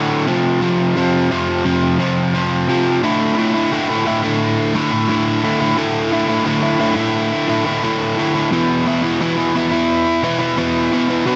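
An overdriven electric guitar opens this rock piece alone, building up over the first 3.0 seconds from an F5 chord at a steady 88 BPM in straight 4/4, tuned to A4 = 444 Hz. The mood is hopeful and soaring. At 3.0 seconds the music moves into a new section on a Dsus2 chord, and an E5 arrives at 8.5 seconds. Picked and double-tracked, the guitar sits up front with a compressed, dark tone, ranging from D2 to B4, and tape echo trails behind its notes. A moderate small-room reverb and a dark, warm production that stops at 8.0 kHz shape the sound, and the clip is cut from a longer piece.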